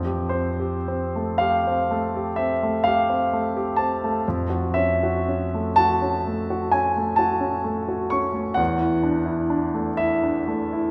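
A warm concert grand piano carries this short, luminous passage of impressionist classical music on its own, with a deep bass and a natural, up-front presence. The piece moves in a slow 9/8 at roughly 37-44 BPM counted in dotted quarters, and the rubato feel lets the pulse breathe freely. The piano spans from E2 up to C#6, its harmony drifting from Fadd9 to F#m7/F at 4.2 seconds and settling on E9sus4 at 8.6 seconds. A wet church reverb with a 2.4-second decay surrounds the instrument, lending the serene mood a spacious glow. Cut from a longer piece, the fragment lasts just under 11 seconds.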